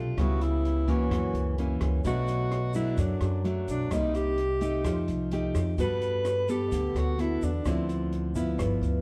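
A straight bossa nova groove in 4/4 carries this wistful, melancholic fragment of a longer piece, where a breathy alto saxophone with light vibrato and subtone sings the clear, up-front melody over a fingerpicked nylon-string guitar with fresh strings and audible finger squeak, a woody pizzicato upright bass, a dark, smooth jazz drum kit with punchy kick, hi-hat and rim click, and a grainy tube shaker that joins in the background at 2.0 seconds, all set back in a large studio's moderate reverb as the jazz chords drift from C#m7b5 toward Gmaj9 and Dm9.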